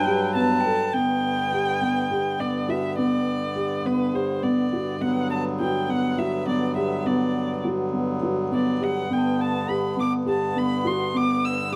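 Contemporary instrumental chamber music in an uneven 7/8 meter, this short passage cut from a longer piece moves at 206 BPM in eighths with a straight feel in G major, tuned to A4 = 445 Hz, and carries a restless yet hopeful mood. A dark, woody violin played by one bowed player sul tasto with vibrato carries the melody up front from B4 to E6, close in tone. Beneath it, a hand-pumped harmonium holds sustained chords from G2 to B4, its reedy, nasal voice seeming to breathe. A felt-muted upright piano, entering at 0.1 seconds, sits slightly louder than the other parts with soft, boxy arpeggios between B3 and A4 that sound thick with felt. A very quiet glockenspiel struck with rubber mallets adds bell-like, ringing touches between G5 and A5, appearing at the opening and again around 9.2 seconds, while the harmony settles from Gmaj7 to G at 0.9 seconds. Close, detailed microphones and light reverb give the ensemble a clear, present sound.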